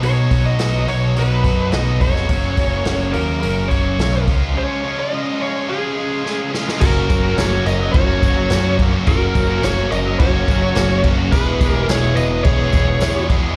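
A driving, confident stretch of classic rock, cut from a longer piece, opens with a bluesy lead guitar carrying the melody in a dark, distorted tone with slapback echo. Beneath it, two overdriven rhythm guitars play riffs, one crunchy and set in the background, the other bright and picked. A growling, up-front bass with overdrive and a vintage acoustic kit with a punchy kick and dark cymbals drive the band through chords of B, F# and C#. After a break at 4.6 seconds and a drum fill, a second, smooth lead guitar enters at 6.8 seconds alongside a very quiet, double-tracked riff guitar and a jingly tambourine, as the harmony moves from F# to E. The whole performance comes across as a live gig heard through the venue's PA, with club reverb and small-room ambience.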